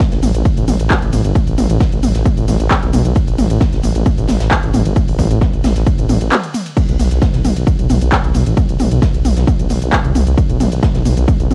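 An overdriven, heavy electronic kick and a layered techno kit of smooth hats, handclaps, shaker, ride, crash and toms pumping under sidechain open this intense, hypnotic stretch of driving peak-time techno at 133 BPM in straight 4/4, tuned to A4 = 441 Hz. At 0.1 s they are joined by a thick, menacing, tube-saturated detuned saw bass that beats and pumps between G1 and C2, while a very quiet acoustic rock kit adds big-room hi-hat and a medium-tuned snare underneath. The electronic parts sit up front and dry on a cassette home recording, with a brief break at 6.3 s in this fragment cut from a longer piece.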